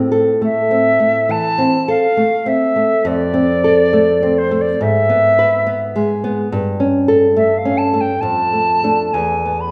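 A pure, expressive silver concert flute with vibrato and a crisp attack carries the melody from 0.4 seconds over a dark, small-sounding fingerpicked nylon-string guitar in this solemn, melancholic romantic duo excerpt, played with rubato and bathed in the wet reverb of a recital hall.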